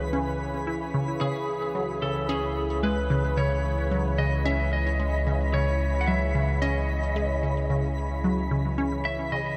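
Bathed in a huge, wet reverb, this hypnotic, cosmic excerpt of sequencer-driven ambient space music in C# minor at 111 BPM sets a twangy, slightly broken-up lead guitar melody with delay against a morphing, vintage wavetable pad sustaining a C#madd9 chord, a squelchy, resonant blip pluck riff run through phaser and delay, a round, deep analog bass holding C#2, and a sparkling granular texture shimmering high above.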